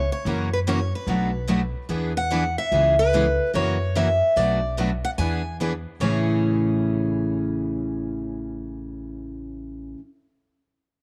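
Acoustic string swing in the jazz manouche tradition, this playful, swinging passage is cut from a longer piece and sets a bright picked steel-string lead guitar, complete with finger squeak, up front over a woody, thumpy pizzicato upright bass on gut strings. Two more picked steel-string guitars, one a dreadnought, enter at 0.3 s to pick through a progression of F#7, Bm7, E9, C#m7, F#7, Bm7 and E7 before the music settles onto Amaj7 at 6.0 s. A moderate spring reverb and small room ambience give the ensemble an intimate, lively sound.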